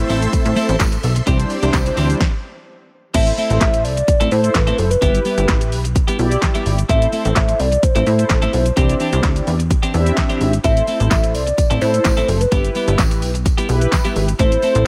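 Dry and punchy, this confident, bittersweet dance-pop excerpt in A minor drives at 128 BPM with an up-front house drum kit, a funky plucky analog bass and mellow synth brass pumping beneath a twangy twelve-string electric guitar riff, while shimmering string-machine violins and a distant jingly tambourine open the track, joined by a faint swell, before a brief stop, after which a hollow, woody clarinet-like synth lead carries the melody from 3.1 seconds.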